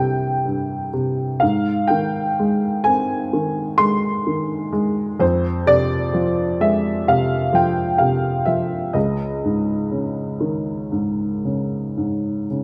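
Classical solo piano in a lyrical, rubato style, this short excerpt cut from a longer piece has a peaceful, calm mood in 4/4, with a slow, flexible pulse. A worn, woody upright piano with a slightly detuned, natural character sits up front and plays alone throughout, spanning from low bass to the upper register as the harmony moves from C through Ab and F minor to a Dbsus2. A moderate scoring-stage reverb surrounds it with a gentle sense of space.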